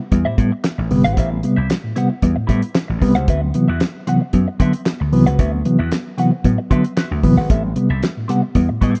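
A straight 4/4 funk groove sits on a damped 70s drum kit, dry and dark with a fat snare, tight kick, hi-hat and handclaps, beside a punchy, amped vintage slap bass, both up front in a sly, cool mood. A reedy electric piano jabs out stabs through its built-in speakers with a fast tremolo, while a clean, compressed electric guitar plays picked accompaniment through a wah, sitting further back. The chords move from Am7 to D13 at 3.3 seconds and back to Am7 at 7.5 seconds, in a rough home-demo mix with light reverb and small-room ambience, cut from a longer piece.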